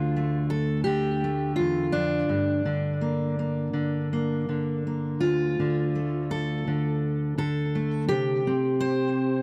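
Haunting and intimate, this brief folk excerpt features a solo fingerpicked steel-string acoustic guitar in D minor at 83 BPM with a loose, rubato feel, its up-front auditorium-bodied tone catching finger squeaks and trailing a tape echo as it moves from Dm through Gm and back to Dm before resting on Csus2 at 8.1 seconds, all captured by close, detailed microphones in light reverb.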